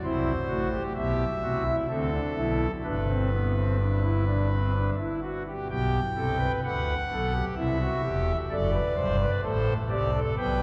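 This classical excerpt is a baroque-style three-part fugue for solo pipe organ in G major, moving at a steady 64 BPM in 3/4 with a straight feel. The mood is serious and driving. The organ speaks on its foundation stops with a thick, romantic voicing, its range reaching from E1 up to G5. It sits up front in the mix, while a cathedral reverb with a 6.8-second decay places the listener further back in a very wet, resonant space. The harmony moves from C through D5 to G in the opening phrase, then a new section at 5.7 seconds begins on G/B and travels through C to D7/F#. The passage breaks off at 10.6 seconds, cut from a longer piece.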